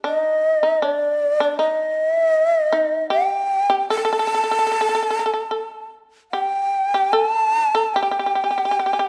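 A light reverb gives this short passage of Japanese chamber music an intimate, close-up sound, with both instruments placed up front. The mood is calm and austere, unfolding in a free, rubato 4/4 at roughly 72-80 BPM. The end-blown bamboo shakuhachi carries the melody from 0.1 seconds, its breathy, bright tone shaped by soft attacks and expressive vibrato, and it sits a little more prominently than its partner. Beneath it, the fretless acoustic shamisen plays a second line in a lower register, its plectrum-plucked notes percussive and buzzing. Both parts continue together until the passage cuts off at 9.1 seconds, part of a longer piece.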